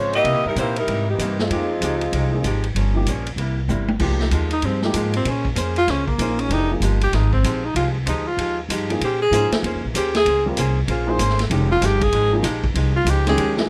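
This brassy, swinging big band jazz piece in F minor opens with a saxophone section carrying the melody with vibrato and a soft attack, over a clean, compressed hollow-body archtop guitar and a pizzicato upright bass with a woody, steel-string tone. The drum kit joins almost at once with a punchy kick, medium-tuned snare, hi-hat, ride, crash and toms swinging at 192 BPM under a rolled-off top, and an open-sounding upright piano comes in at 1.5 seconds. The section's line ends by 2.7 seconds, and after a drum fill a tenor saxophone solo begins at 4.5 seconds, up front, warm and smooth on top. Beneath the solo the harmony moves between Fm9 and Bbm9 chords, while the guitar, piano, bass and drums carry on to the end. The sound is a dry, close 1970s-style studio recording with small room ambience, and the passage is cut from a longer piece.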